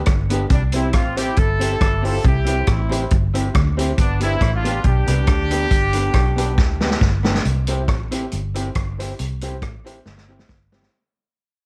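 A dry recording with vinyl crackle running underneath sets the sound of this cheerful ska fragment in C major, moving at 138 BPM in a straight 4/4. An up-front vintage drum kit with a punchy kick, medium-tuned snare, rim click and hi-hat leads the mix, joined by a round, foam-muted fingered bass that sits beneath it. A clear, smooth-topped horn section carries the joyful melody from 0.5 to 7.0 seconds with slapback echo, while a woody, boxy upright piano plays stabs in the background, also treated with slapback. A clean, picked hollow-body jazz guitar adds accompaniment with the same echo, and a very quiet, mellow electric guitar plays a low riff. The harmony moves between G and C, a drum fill leads into the new section at 7.5 seconds, and the music fades out from there to the end.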